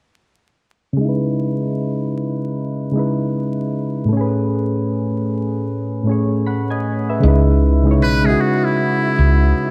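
A trumpet with a metal mute carries the melody late in this reflective, melancholic lo-fi hip hop excerpt, its buzzy, breathy jazz tone entering at 8.0 seconds over soft electric-piano-like synth keys. Those keys set the scene from the start, round and warbling with a vintage character, colored by chorus, a cassette tape effect and a low-pass filter that sweeps across them through the opening stretch. The harmony moves from C#m9 to Amaj9 and back to C#m9 in C# minor, at 77 BPM in 4/4 with a swung sixteenth-note feel. A woody fretless electric bass arrives at 7.2 seconds, hollow and amped, bathed in lush chorus and sitting prominently in the mix. The dark production adds vinyl crackle and a moderate spring reverb, giving the short passage a hazy, late-night intimacy.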